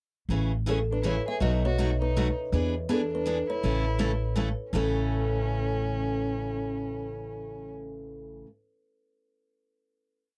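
A picked steel-string acoustic guitar and an upright bass open this short, playful piece of acoustic string swing in the jazz manouche style at 0.3 seconds. It moves at 162 BPM in a lively, swung 3/4 in A major. The guitar, bright with fresh strings and placed up front, strikes a rhythm chord on every beat, short and accented on two and three, while the pizzicato bass, woody and close, plays root and fifth beneath it. A kalimba carries the melody in thumb-plucked, ringing, song-like motifs, its boxy small-room tone given a slapback echo. A single warm violin adds a smooth, expressive harmony line mostly in sixths, with vibrato and portamento. The chords run from Amaj7 through B7 and E7 back to A, settling onto a final chord at 4.7 seconds, all heard in a dry, close 1970s-style studio sound.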